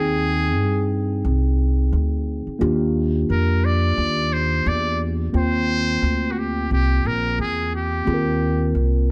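A 4/4 groove with swung sixteenths drives this smooth, warm hip hop piece, cut from a longer work, with a dark, warm production, light reverb and the ambience of a small room. An upright bass, plucked pizzicato on steel strings, sits up front with a woody, acoustic tone and carries the low end. A clean, direct tine electric piano supplies mellow accompaniment, moving from Abmaj7#11 to Ebmaj7 before settling on Eb6. Over this, a trumpet with a metal mute takes a jazz-style solo, up front and buzzy, thin and breathy, with a soft attack and a whispered, intimate, vintage character. The solo runs through the first 5.3 seconds, the music then moves into a second section, and the trumpet stops at 8.7 seconds.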